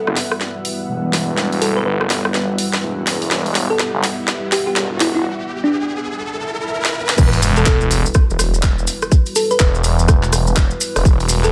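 A swung 124 BPM bass house groove in E minor struts with gritty swagger as a garage drum kit with cracking snare and handclaps drives a thick, swirling phased saw bass under a dark, moody analog pad and a cloudy granular texture that ends at 5.2 seconds, while a round, tine-like thumb-piano pluck with tape echo enters at 1.6 seconds and a riser builds to a drop at 7.2 seconds, where a tight electronic kick and grainy maracas join in this excerpt.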